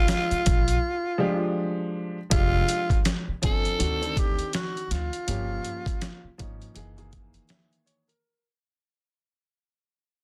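A growling, breathy tenor saxophone opens this cool, nocturnal jazz-hop fragment over a smooth, vintage upright piano, joined almost at once by a gritty, pitched-down boom bap kit with a thumpy kick and a brief, very quiet touch of bright shaker and congas. A dark pizzicato upright bass enters at 0.3 seconds, and after a break the music fades out from 2.3 seconds, with the saxophone dropping away at 6.4 seconds. The sound is dry, dense and heavily limited, with the raspy sax and tape-toned drums up front and lossy compression artefacts in the master.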